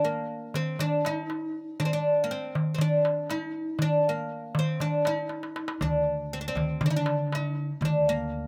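A dry, open-air sound frames this melancholic, longing Arabic maqam ensemble at 120 BPM in a straight 4/4, tuned to A4 = 438 Hz, where a bright, woody, plectrum-plucked fretless oud with double strings sings the up-front melody throughout while a crisp, high metal-shell darbuka played with hard hands keeps time, snapping a fill at 5.3 seconds just before a growly, steel-strung pizzicato upright bass enters at 5.8 seconds to close out this short cut from a longer piece.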